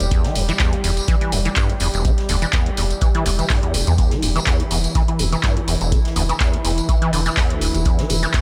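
A warbly, lo-fi pad holding E minor chords opens this raw, gritty acid house passage at 124 BPM, joined from the start by a rubbery, resonant acid bass riff with a sawtooth filter pluck, tube saturation, chorus and tape echo, plus a round sine sub bass, metallic drum-machine hats and handclaps, and a jingly vintage tambourine. A deep analog kick arrives at 0.1 seconds, leading the mix with a very quiet, dry cocktail kit adding hi-hat and a high-tuned snare, while sidechain pumping breathes through the pad and both basses. The light swing on the 16ths and the small-room ambience keep this short cut from a longer piece loose and dark.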